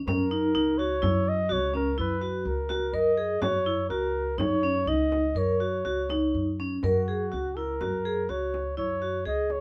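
Contemporary instrumental chamber music in 7/4, this restless, pensive fragment from a longer piece moves at 124 BPM with a straight feel, tuned to A4 = 442 Hz. A mellow flugelhorn carries the solo melody up front in a jazz style, sitting between F#4 and D#5, while a vibraphone struck with hard mallets spins metallic, ringing arpeggios with a medium motor vibrato and an airy shimmer, also placed up front. Underneath, a pizzicato upright bass with steel strings gives a woody, dark foundation from C#2 to F#2, entering at 0.0 seconds just ahead of the others. A small frame drum played with soft hands stays close, dry and bright in the background. The harmony rests on F# before opening to F#add9 at 6.8 seconds, and light reverb gives the ensemble a gentle sense of space.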